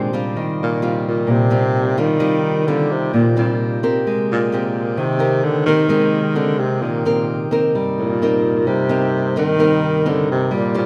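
A straight 4/4 bossa nova groove at 130 BPM in Eb major sets a relaxed, breezy mood in this excerpt from a longer piece. Up front, a mellow, breathy tenor saxophone carries the jazz-style solo melody with vibrato, subtone and scooped notes over a small, fingerpicked acoustic nylon-string guitar, while a light pipe organ with bright, sparkling flute stops holds romantic sustained chords in the background. The harmony moves from Eb69 to Abmaj9 at 4.1 seconds and Cm7/G at 7.8 seconds, heard in a moderate scoring-stage reverb.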